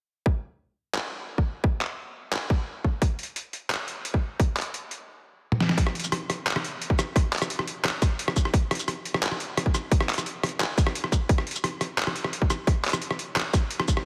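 Dark and heavy, this drum and bass excerpt at 174 BPM rides a half-time feel, with an overdriven, hard-clipped electronic kick from 0.3 seconds joined at 0.9 seconds by a gritty, pitched-down sampler-style kit of handclaps, hi-hat, rim click, shaker, medium-tuned snare and toms, both up front in studio reverb, before a drum fill at 5.5 seconds tips into the drop at 5.8 seconds under a heavily compressed, radio-like sheen.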